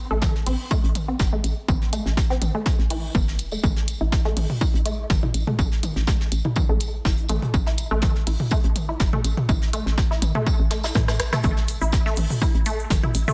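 The overdriven electronic kick sits up front, punchy and analog in character, driving this sparse, hypnotic minimal techno excerpt at 123 BPM in 4/4 with a light 16th-note swing. Beneath it, a hollow, bouncy FM bass with tube saturation and sidechain pumping knocks through the low end, while a squelchy, detuned sawtooth pluck carries the riff with chorus, digital delay and a filter sweep running throughout. Percussion is layered: clicky hats and rim clicks from a minimal electronic kit, layered electronic toms, and a soft brush kit with a fat snare, filtered hats and tambourine that carry sidechain pumping. A drum fill arrives at 11.0 seconds, and a grainy, bright tube shaker joins in the background at 11.4 seconds. Light reverb and studio ambience surround a dense, heavily limited modern master.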